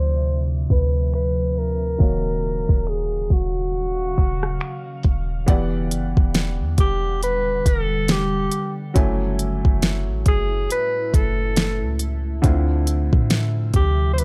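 A dry, gritty recording with a low-pass filter and digital ambience frames this slow contemporary R&B excerpt at 69 BPM in 4/4, with a swung sixteenth-note feel and a sensual, longing mood. A warm alto saxophone carries the melody up front, its jazz-style solo voice marked by light vibrato, subtone and a vintage, punchy edge, and treated with tape echo. Beneath it, a dark grand piano plays mellow, worn accompaniment with short sustain and audible action noise, while a glassy FM pad holds ethereal chords that bloom slowly and linger, thickened by ensemble chorus and its own reverb. A clean, boomy 808-style bass sits deep and up front, and from 0.3 seconds a smooth, produced drum kit adds a soft kick, fat snare, hi-hat, rim clicks and finger snaps. A filter sweep shapes the opening until 5.5 seconds, as the minor-ninth chords move from Dm9 and D#m9 through Em9 and F#m9 before returning to Dm9.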